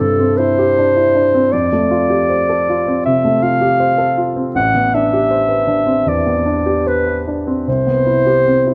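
The rhythm moves with a rubato feel in 4/4, hovering around 74 to 81 BPM, in this short, mysterious and wistful impressionist classical passage for clarinet and grand piano in A minor. Across all 8.7 seconds, the clarinet carries the melody in a classical style, its warm tone sitting up front in the A4 to F#5 register. The grand piano supplies accompaniment from A1 up to C5, its sound present and polished, also placed up front. The harmony drifts through C69, F69, Am11 and Cmaj7. Close, detailed microphones capture both instruments within a moderate recital hall reverb, and the fragment is cut from a longer piece.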